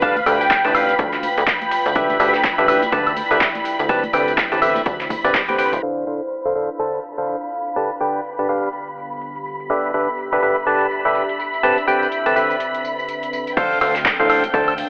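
Opening on a brief glassy, crystalline wavetable pluck over a hollow, up-front organ stab riff, lush bowed strings, a deep, moody pad, a punchy, funky analog bass, an overdriven kick, a gritty sampler-style kit, an overdriven analog drum machine with claps, woodblock and crash, and dry background tambourine and congas, this bittersweet, energetic piano house excerpt at 124 BPM in D dorian swings through G7, Em7 and Cmaj7 chords with sidechain pumping. It drops the bass, kick and sampled kit for a filter sweep around 5.8 seconds, then brings back the kick and kit for a drop at 13.6 seconds, with the bass rejoining just after. Everything is wrapped in a lush hall reverb behind a low-pass, telephone-like filter.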